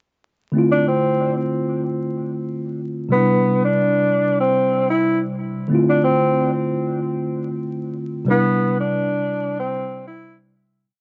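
Dark and reflective, this short boom-bap hip-hop piece moves with a gentle swing and a dusty, lo-fi air, wrapped in vinyl crackle and a dulled top end. A mellow tine electric piano, colored by cassette tape, enters at 0.5 seconds, holding spread-voiced chords that alternate between Dm7 and Cmaj7 and repeat like a sampled loop; its tone is worn and slightly out of tune yet clean and up front. Just after, a breathy tenor saxophone takes the lead with a short, jazz-style looping melody, its subtone and vibrato carried by tape echo as it sounds distant and roomy. Light reverb and studio ambience frame the pair. The whole verse begins fading at 8.3 seconds and is gone by 10.9 seconds.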